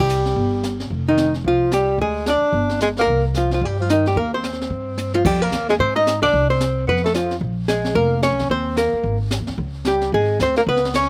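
A dark, clean archtop guitar carries the melody up front from the opening, with a breathy, whispered tenor saxophone tracing a second line beneath it through a slapback echo and a woody, thumpy upright bass, as brushes on a jazz kit with dark cymbals and a boomy kick join at 0.1 seconds. This moody, swinging small-group jazz moves at a brisk 221 BPM in C minor, and a drum fill at 5.0 seconds leads into a second section in F minor at 5.2 seconds. The dry sound carries little reverb, and the fragment is cut from a longer piece.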